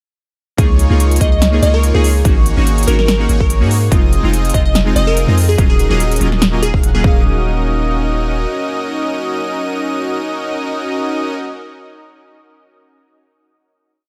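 A dry, close mix with little reverb gives this dreamy, emotional future bass piece an intimate, up-front feel. At 144 BPM in 4/4 with a swung, half-time groove in Eb dorian, it opens straight into a drop at 0.6 seconds, moving through Db69, Ab9sus4, Fm7 and Ebm7 chords. A deep, sine-like 808-style bass sits up front, matching the kick as the loudest part of the mix, while a punchy, overdriven electronic kick and a layered dance kit with a crisp snare and hi-hat rolls drive the half-time beat. A smooth, detuned supersaw throbs through dotted-rhythm chords with tape echo, glassy digital keys add bright, chorused chords, and an airy, softly vibrating lead floats high in the background, doubling the chords an octave up. A crystalline wavetable pluck enters at 1.2 seconds with short answering phrases, and after the drums fall away, the bass, keys, supersaw and lead carry a final hit that rings out to about 11.6 seconds, all pumping against the kick.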